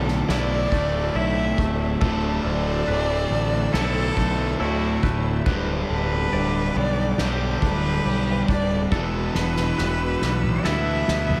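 Euphoric and hopeful, this post-rock excerpt moves at a steady 70 BPM in D major, with a clear, bowed solo cello carrying the melody through tape echo above a very quiet, earthy string section holding sustained chords. Two twangy clean electric guitars play arpeggios in the background, one fingered and warm, the other bright, compressed and phased. A bright, distorted guitar riff and an up-front fuzz bass give the low end real grit, while a distant, roomy kit played with soft mallets, dark cymbals and a punchy kick rolls into a drum fill at 8.9 seconds as the harmony moves from Dadd9 through G/D to Emadd9.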